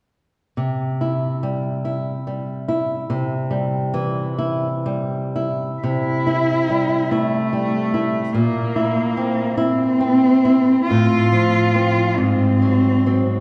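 A lyrical cello with vibrato and portamento sings an expressive, distant melody from 5.8 seconds over a dark, fingerpicked nylon-string guitar that opens alone at 0.6 seconds, in this warm romantic duo excerpt in a rubato 6/8, set in the long, wet reverb of a church.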